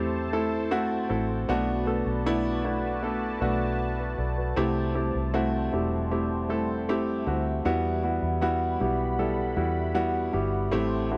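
A present, up-front grand piano carries the accompaniment in this melancholic, emotional pop excerpt at 78 BPM in E minor, moving through Am7, Bm7 and back to Am7 before settling on Emadd9 at 7.6 seconds. Beneath it, a dark, round, foam-muted electric bass gives punchy low support. A softer, evolving pad of detuned sawtooth and triangle tones with a sub octave holds mellow sustained chords, its slow attack and long release thickened by chorus, all captured in a dry, close 1970s-style small room.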